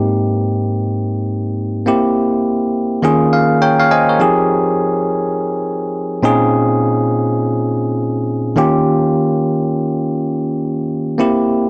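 Punchy and slick, this short R&B fragment cut from a longer piece features a solo tine electric piano, bell-like, bright and up front, swinging its sixteenths through chords such as Abmaj9, Fm7 and Bbm11, with a fill at 3.0 seconds leading into the second section under light digital ambience.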